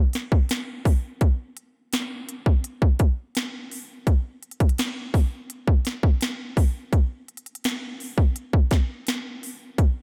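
Moody and longing, this short R&B fragment cut from a longer piece moves in a straight 4/4 feel carried entirely by an electronic trap drum kit. Playing from 0.1 to 9.9 seconds, the up-front, produced kit pairs a hard-clipped kick with a sharp snare and crisp hi-hats. Light reverb and a digital ambience frame the sound.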